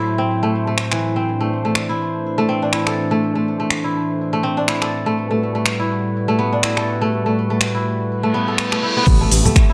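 A bright, crisp kora rings out up front with fingerpicked arpeggios that pump with the sidechain and trail off in delay, over a warbling vintage analog pad that holds sustained chords from D7/A through Cadd9/A to Gmaj7/A, thickened with chorus. This hypnotic afro house cut moves at 123 BPM with a 16th-note swing, and a tape-warm afro-pop kit of metallic hats, cabasa, finger snaps and crash enters at 0.8 seconds, all in a moderate digital room reverb. A reverse cymbal runs from 8.3 seconds into 9.1 seconds, where the chord lands on Am7 and a deep, prominent electronic kick arrives with a smooth, gliding, mellow synth bass and thin-skinned, low-tuned congas sitting in the background.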